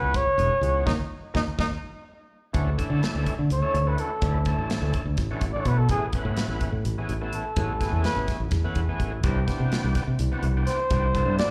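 Bright and slick, this live club excerpt of electric jazz fusion moves in 7/8 at 251 BPM (eighths) in D lydian, with a growly, up-front fingered electric bass and a tight, airy modern studio drum kit driving beneath a gritty, overdriven tonewheel organ turning through a slow rotary speaker with slapback echo. A dark, breathy trumpet with light vibrato and slapback echo carries the melody from the start. After a band accent at 0.9 s, the drums and organ both fill up to 2.5 s, where the trumpet takes a punchy jazz solo over Dmaj9, Amaj9 and Cmaj9 chords. The performance comes through the venue's PA with club reverb and small room ambience.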